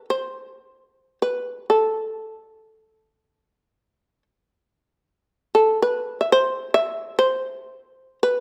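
Heard in a moderately reverberant recital hall, this brief, solitary passage from a longer piece of Japanese traditional chamber music unfolds in free time on the hirajoshi scale in A. A lone shamisen, up front and powerful, carries it from start to finish over 8.4 seconds, its fretless, plectrum-plucked tone bright, percussive and buzzing. The playing stays between A4 and E5, giving the moment an austere character.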